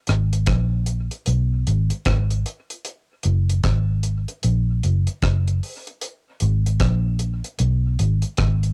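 Dub reggae at 76 BPM in G# minor, heavy and deep, with a swung sixteenth-note feel in a short cut from a longer piece. A vintage muted fingered electric bass sits up front, dark, round and foam-muted with an amped tone low in its register, while a deep reggae drum kit of hi-hat, tight kick and rim click sounds acoustic and dry and sits up front as well, both running from 0.1 to 8.7 seconds. The sound is close and nearly reverb-free, with the grain of a home cassette recording.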